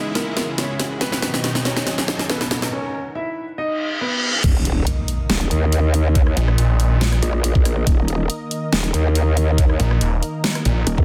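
A dense, heavily limited mix opens this chaotic, heavy wobble dubstep excerpt at 140 BPM in half-time Eb phrygian, where a lush, detuned unison pad pumps under sidechain, a faint evolving ambient pad and a tape-echoed grand piano melody ride a riser and drum fill until the drop at 4.4 seconds unleashes a growling formant-filtered wobble bass, a knocking up-front kick with a huge snare, crashing impacts and zaps, and bursts of snarling distorted saw bass from 6.4 seconds.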